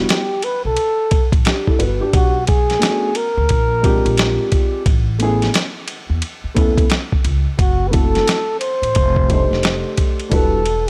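A breathy, whispered flugelhorn carries the melody up front with light vibrato, soft attacks and scooped notes, drifting over a mellow, nocturnal jazz-hop groove at 88 BPM with a swung 16th-note feel. A gritty, compressed sampler-style kit with a thumpy kick, fat snare, hi-hat and ride sits just as close, while a boxy, dark concert grand comps beneath and a woody pizzicato upright bass enters at 0.6 seconds. The dry, intimate sound moves through shadowy chords such as Em9, A#13 and F#m7b5 before returning to Em9 in this short cut from a longer piece.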